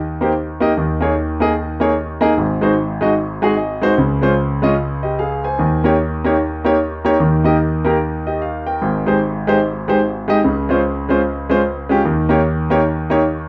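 A moderate stone-room reverb surrounds a warm, present grand piano that sits up front with long sustain, captured as a live performance in one room. This reverent, uplifting gospel passage, cut from a longer piece, swings its eighth notes in 4/4 as the piano alone moves through rich suspended, seventh and major-seventh chords across a broad range. A short fill at 3.2 seconds stands out before the harmony settles and moves on toward a closing dominant seventh.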